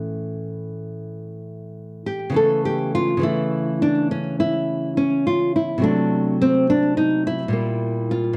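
Introspective and grave, this brief excerpt from a longer piece is a classical, baroque-style dance in 12/8 for solo nylon-string guitar, played with a rubato feel. The fingerpicked guitar sits up front with a warm acoustic tone and a touch of slapback echo, ranging from A2 to A4 as the harmony moves from A through A/C# and D7/C to Gm/Bb, with a new section beginning at 2.4 seconds. The sound is dry and close, in the manner of a 1970s studio recording, with the faint ambience of a small room.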